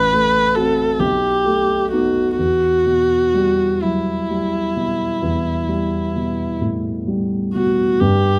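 Yearning and solemn, this brief fragment of a romantic classical duo moves with a flexible, rubato sway in a lilting 12/8. A single bowed viola carries the melody up front, its tone rich, smooth and close with a light vibrato, while a dark, mellow grand piano supports it from the low bass upward through a progression from F#dim/A to B7 and settling on Em around 2.4 seconds. Both instruments play together throughout, set in a moderate stone-room reverb that lends a resonant, hallowed air.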